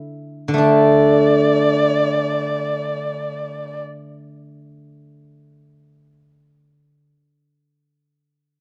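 A dark recital-hall sound with moderate reverb frames this graceful, festive excerpt of Chinese traditional chamber music in free time, where a silvery, ringing steel-string zither played with fingerpicks accompanies up front from the start until 7.1 seconds, while a single woody, smooth-topped bowed erhu sits equally forward and carries the melody with vibrato and portamento from 0.6 to 3.8 seconds.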